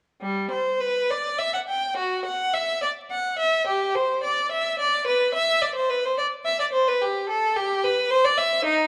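Dark production with vinyl crackle and a moderate recital-hall reverb frames this serene, flowing excerpt of a baroque-style suite movement in G major, where a single bowed violin plays alone from 0.2 to 8.9 seconds, rich, smooth and even, with vibrato, moving at 72 dotted-quarter beats per minute in a rubato 12/8.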